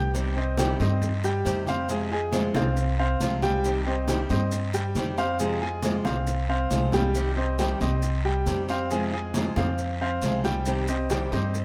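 A straight four-beat Cuban son and guajira groove carries this sultry, warm passage cut from a longer piece, with damped, low-tuned congas played by soft hands sitting distant and in the background of a large room alongside a raspy, close guiro and grainy, saturated maracas. Up front, a clear concert grand piano spins arpeggios with deep bass and long sustain, while a pizzicato upright bass on gut strings gives a woody, thumpy, dark foundation. A bright flamenco guitar with fresh strings adds fingerpicked accompaniment a touch quieter in the blend. The harmony rocks steadily between C minor and F minor. A drum fill at 6.7 seconds briefly breaks the pattern before the groove rolls on under light reverb.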